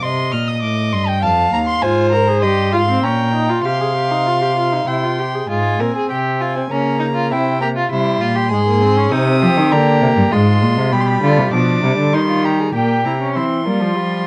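Driving yet contemplative, this short cut from a longer baroque-style fugue for string quartet moves at 99 BPM in a straight 3/4, its harmony circling C minor with turns through F minor and dominant-seventh colors. A dark, up-front cello anchors the bass from the first moment, its gut strings giving a smooth top to the low line, while a rich second violin carries an inner line beneath the melody. The lead violin sings high above with a period-style, lightly vibrated tone that is slightly reedy, sitting a touch behind the other parts in level. At 1.8 seconds a distant viola enters with accompaniment, filling the middle of the texture with its own gut-string richness. The whole recording wears the patina of worn cassette tape, with warbling pitch drift and a light reverb that make the bowed playing feel like a half-remembered performance.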